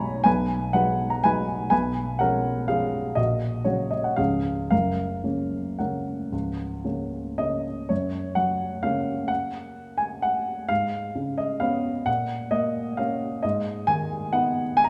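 Elegant and graceful, this short excerpt from a classical piano waltz in F# major moves in 3/4 with a rubato feel between 109 and 139 BPM, its solo baby grand sounding intimate and up front with audible action noise and short sustain, ranging from C#1 to B5 in a wet recital hall reverb as it passes from G#m7/B through C#7 and F# harmonies to settle on G#m at 13.4 seconds.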